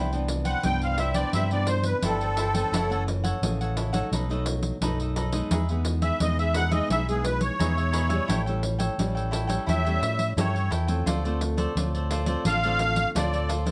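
Sunny and playful, this short cut from a longer samba and choro piece moves at 86 BPM in a straight 4/4, centred in C major with tuning at A4 = 439 Hz. A musette accordion carries the melody as a solo from 0.5 s, its reedy, shimmering musette tuning sitting up front. Underneath, a crisp, picked cavaquinho and a warm, fingerpicked classical nylon-string guitar provide acoustic accompaniment. A fingered electric bass, amped and bright with an envelope filter, also sits up front. A jingly pandeiro, close and dry with hard hands, joins at 0.1 s. The harmony travels from Cmaj9 through F#m7, B7, Emaj7 and A7 to Dm7, all within a moderate studio reverb.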